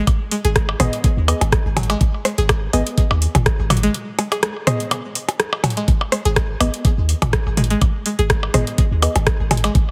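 A twangy, string-like resonator pluck carries the riff through this hypnotic, sparse minimal techno excerpt, its bright sawtooth tone treated with chorus, phaser, delay and sidechain pumping, while muted, detuned dub chord stabs enter at 0.8 seconds with a mellow, filtered bite. Underneath, a knocking electronic kick sits up front beside a deep, punchy sine sub bass with a pitch-drop attack and tube saturation, joined by a garage kit of metallic hi-hats and rim clicks and a tape-touched minimal click kit of blips, rim clicks and toms with delay. The mix has light reverb and a heavily compressed radio sound, with a break between 3.9 and 5.9 seconds, all set on a gentle 16th-note swing.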